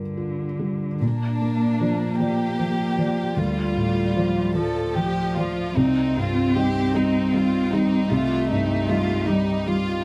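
Neoclassical piano and strings in a rubato 6/8, melancholic and reflective in mood, cut from a longer piece. A felt-muted upright piano sits up front from the outset, its thick felt giving a soft, mellow, intimate tone as it carries the accompaniment across a broad range. Alongside it, a single bowed cello adds a woody second line with vibrato that sounds somewhat distant. At 1.0 seconds a chamber violin section takes the melody, bowed sul tasto with a gentle attack and light vibrato for a close, hushed ensemble sound. From 2.5 seconds a very quiet, deep ambient pad of detuned sawtooth and sine layers with a sub octave arrives with a slow attack to hold sustained chords, its chorus and built-in reverb lending a moody haze behind the acoustic instruments. The harmony moves from Gm7 through Bb and Dm to Cm, captured with close, detailed microphones and light reverb.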